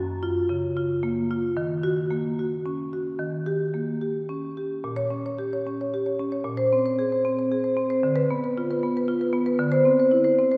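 The music moves in a swaying 6/8 lilt, pulled freely by rubato so the beat breathes rather than marks time. This short cut from a longer contemporary classical piece is performed by a single marimba played with medium mallets, whose woody rosewood bars give it a warm tone that sits up front. It ranges from Gb2 in the low register to Db5, drifting through lush harmonies such as Gbmaj7, Ebm7 and Eb7 in the opening passage. At 4.9 s a second passage begins, shifting through Bbm6 and Abadd9/Bb before turning to Dm6 and Cadd9/D. A wet concert hall reverb with a 2.2-second decay lets the notes bloom and linger, creating a hypnotic, flowing mood that feels heard from further back in the room.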